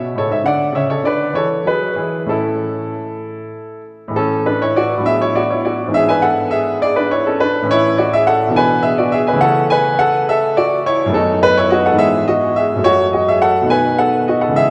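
A worn, warbling old cassette sound colors this short cut from a longer baroque-style suite movement, its pitch drifting gently while a wet concert hall reverb lets each note linger. At its heart is a solo concert grand piano, clear and open, placed up front with a deep bass reaching down to F#2 and a treble climbing to G#5. The movement sways in a lilting 6/8 with a free, rubato feel, giving it a dance-like yet serene character. A brief opening section gives way at 4.1 seconds to a longer second passage that wanders through richer harmony, touching on F#m and closing on B7 at 13.7 seconds. The effect is that of an elegant keyboard dance heard through an aging tape, graceful and calm beneath the wavering sound.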